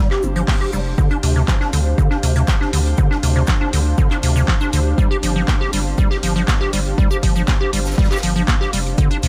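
Acid house at 120 BPM with a gritty, driving mood, cut from a longer piece, where a squelchy, resonant square-wave acid bass riff with overdrive, lush chorus, tape echo and a filter sweep rides over a deep, saturated sub bass and an up-front punchy kick entering at 0.5 s, while analog drum-machine handclaps and hi-hat play alongside a background acoustic kit of hi-hat, shaker and bundle-stick snare and a cloudy, evolving granular pad, the kit and pad both pumping, over chords moving from G7(no3) to Dm7 and back, all in a fairly dry mix.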